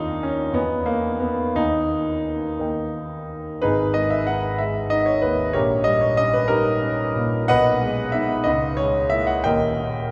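A concert grand piano stands up front in this solo romantic character piece, its deep bass and long sustain carrying a bittersweet, passionate mood. Cut from a longer work, the passage moves in a slow, rubato 6/8 at about 55-64 BPM counted in dotted quarters, in G# minor. The piano spans a broad range from D#1 to G#5, and its tone sits inside a wet cathedral reverb that lingers for about 6.3 seconds, giving the sound the air of a church or concert hall. The opening phrase leans on dominant and major-seventh harmonies, touching the home chord over a D# bass before coming to rest on the dominant. At 3.6 seconds a new section begins, drifting through darker, half-diminished colour and arriving back on the dominant at 9.5 seconds, leaving the music unresolved as the recording ends at 10.1 seconds.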